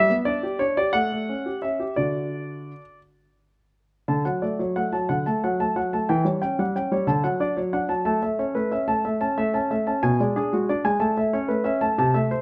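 A graceful, cheerful classical-period piano sonatina in D major, this short excerpt moves in 6/8 at 56-62 BPM, counted in dotted quarters, with a flexible rubato feel and tuning set to A4 = 435 Hz. A solo grand piano, warm and present with short sustain, sits up front across a range from B2 to A5, its opening phrase giving way to a second section at 4.1 s. Close, detailed microphones catch the instrument inside a moderate recital hall reverb, with a faint mains hum beneath.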